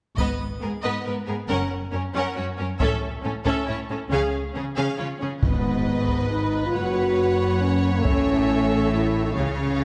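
A relentless, epic orchestral film cue in 3/4 at 137 BPM opens at 0.2 s with a full bowed string section. Clear, intense violins carry the melody and a second line, lush violas add accompaniment with a soft attack and portamento, and cellos and double basses anchor the bass, all with vibrato. Close, dry taiko struck with heavy sticks drives underneath, while a faint triangle sounds briefly in the background. At 5.4 s a dark French horn section enters on sustained chords, marked by a huge impact and a very quiet, articulate timpani hit with hard mallets, over chords moving through G#m, F#, A and C#, all set in a wet concert hall reverb.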